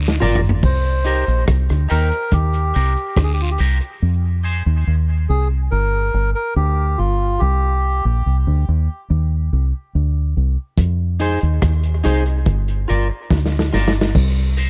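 Hypnotic and meditative, this dub reggae excerpt moves at 71 BPM in C minor over a dry, close 1970s-style studio sound in a small room, anchored by a dark, round, foam-muted fingered bass that runs throughout. A muffled, lo-fi vintage drum kit with dark cymbals and a tight kick opens with a fill, joined briefly by cabasa and guiro touched with dub echo, while a clean, picked electric guitar carries spring reverb and echo and a reedy, breathy melodica sings the melody until 8.0 s. The drums and guitar drop away, leaving the bass and melodica, then the bass alone, to carry the middle stretch until the drums return at 10.8 s and the guitar re-enters at 11.2 s under a filter sweep, over chords moving from Gm7 through Cm7, Ebmaj7 and Fm7.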